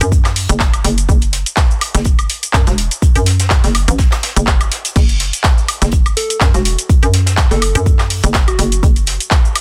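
A dense, heavily limited modern mix drives this bouncy, aggressive bass house fragment, where a punchy electronic kick and a house kit with bright hats, handclaps, shaker, woodblock and crash sit up front over a hollow, knocking FM bass with tube saturation and sidechain pumping, a very quiet acoustic brush kit adds high-tuned snare and hi-hat beneath, and a round, gentle struck synth lead with chorus and delay enters at 6.2 s.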